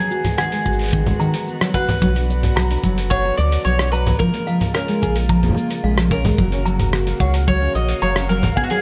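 A bright, woody mandolin melody opens this playful folktronica excerpt in F# major at 110 BPM, over picked steel-string acoustic guitar arpeggios, a clanky toy piano line with digital delay, an intimate string quartet with 12-bit grit, muffled lo-fi sampler drums with cabasa, congas, hi-hat and rim click, a tight background kick, and a round, deep analog bass, before a reversed, dreamy swelling texture enters at 6.6 seconds over chords moving from G#m7 through Bm and A#m7 to F#.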